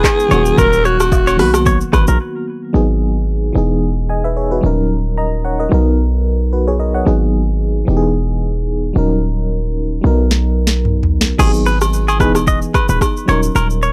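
Afrobeats with a romantic, sunny mood, where a breathy, raspy alto saxophone with vibrato and analog delay sings a brief opening line over a mellow, tremolo-laced FM electric piano and a punchy, heavy 808-style bass, while a deep-kicked afro-pop drum kit with agogo bells and woodblock and a bright, twangy clean electric guitar riff drop away around a break at 2.2 seconds; the drums return with a fill at 10.3 seconds, and the agogo bells, woodblock and guitar rejoin them to fill out the final stretch from 11.4 seconds in a dry, gritty mix.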